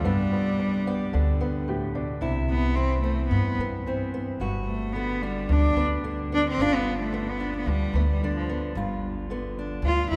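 A straight, steady 4/4 pulse carries this pastoral, nostalgic acoustic folk piece for a small band, cut from a longer work. Pizzicato upright bass on gut strings lays a dark, thumpy, woody foundation up front, while a fingerpicked steel-string acoustic guitar supplies boxy accompaniment. A clear upright piano adds short-sustained arpeggios only until 2.3 s. The bowed cello, one player sounding close and intimate with light vibrato and a soft sul tasto attack, carries the melody and takes a solo from 2.2 s to the end at 10.2 s. The harmony moves from G through Cmaj7 and Gmaj7 to G7, all set in the long, wet reverb of a church or concert hall.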